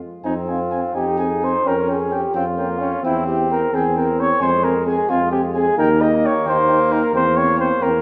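At 0.2 s a classical brass quintet sounds together, opening a solemn, heroic passage in 6/8 with a free, rubato feel, lifted from a longer piece. The mellow flugelhorn carries an up-front second line, while the trumpet's dark melody sits high but distant in the background. Beneath them, a brilliant trombone and a French horn with light vibrato fill in the accompaniment, the horn also set back in the mix. A soft-attacked, warm tuba anchors the bass and sounds more present than the distant upper brass. The harmony moves from Fm through Bbm6/F and C/E, back to Fm and on to Eb, closing on C7/E near 7.1 s, all bathed in the long, roomy glow of a recital hall.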